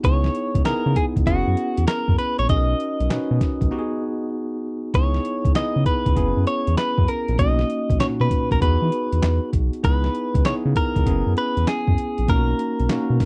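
Confident and slick, this dry, close-sounding R&B excerpt in a new jack swing style sets an up-front, picked clean electric guitar melody with slapback echo over bell-like tine electric piano chords, a round, deep analog bass and a gritty, pitched-down boom bap sampler-style kit with thumpy kick, handclaps, hi-hat and snare, all riding swung 16ths through a C#m7, F#7sus4 and Bmaj7 progression with a brief break from 3.7 to 4.9 seconds.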